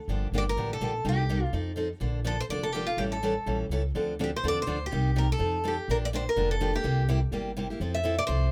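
Bittersweet and swinging, this fragment of a longer gypsy-jazz tune races along at 249 BPM in 4/4 with a swung eighth-note feel, moving through minor-ninth and altered-dominant colours like Gm9 and A7b9 before settling on Fmaj7 at 7.8 seconds. A boxy, parlour-sized steel-string guitar picks the accompaniment while a pizzicato upright bass with gut strings adds a woody, thumpy low end, both starting at 0.1 seconds. From 0.4 seconds a bright, concert-sized picked guitar carries the melody, its finger squeak audible, all three parts sitting up front in light reverb.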